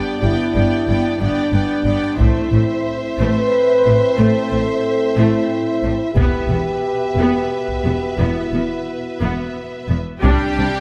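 A cinematic, epic orchestral film score in E minor, this heroic excerpt moves at 60 BPM in a slow 6/8, with a lush violin section carrying the melody over a second violin line, an intense, clear viola accompaniment, and mellow French horns sustaining chords alongside a background trombone section with light vibrato. Rich bowed cellos and double basses anchor the bass from 0.2 seconds, and a taiko ensemble struck with hard sticks enters at 2.2 seconds, adding live-room weight as the harmony moves from G through Am to Em. A full string section arrives on a Csus2 chord at 10.2 seconds, all set in a moderate concert hall reverb.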